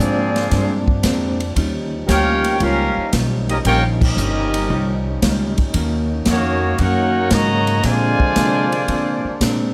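A clear, up-front trumpet section carries the melody in this joyful big band swing excerpt, its light vibrato and soft attack giving the line a vintage jazz polish. Beneath it, a close-miked trombone section plays a tight second line with vibrato, while a second trombone section sits in the background holding warm sustained chords. A clean hollow-body electric guitar, picked and tucked behind the horns, adds accompaniment, and a woody, thumpy pizzicato upright bass anchors the harmony as it moves from Bb9 to Eb9, Ebm7 and back. The acoustic drum kit swings at 115 BPM in 4/4 with an airy, punchy sound of ride, hi-hat, snare, kick and crash, and the whole band hits an accent together at 3.9 seconds. A moderate, large studio reverb gives the ensemble a roomy sheen throughout its roughly 9.7 seconds.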